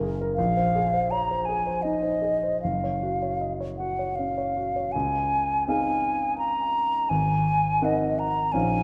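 A wet recital hall reverb with a 1.6-second decay surrounds this dark, warmly produced excerpt from a longer classical piece, an impressionist duo for flute and grand piano. The mood is pastoral and luminous, moving in a rubato 3/4 between 74 and 85 BPM in Db major. The concert grand opens alone at 0.0 s as accompaniment, natural and up front, with a deep bass that reaches down to Gb1. The silver flute enters at 0.4 s with the melody, its close-miked, hollow and pure tone sitting between Eb5 and Bb5, tongued and shaded with vibrato. The harmony drifts from Bbm11 through Gb5 into a second section at 4.9 s built on Dbmaj9 and Ab9, and both instruments carry on to the end.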